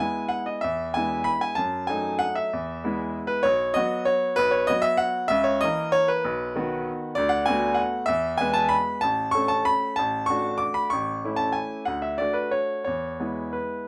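In a rubato 3/4 at roughly 170-204 BPM, this playful, elegant classical piano waltz features a solo baby grand piano, polished and up front in light reverb, ranging from A1 to D6 as it moves from E major into A major at 7.2 seconds over diminished and seventh chords.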